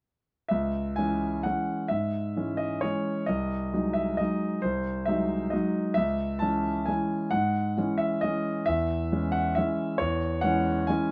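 A solo concert grand piano opens at 0.5 seconds with an elegant, wistful classical waltz in three, its beats uneven and pulled by rubato as the harmony moves from C# minor through G#7/B# and back. The piano sounds clear and natural, placed up front with a deep bass, set in a moderate studio reverb within a dark production. This short passage, cut from a longer piece, ends at 11.1 seconds.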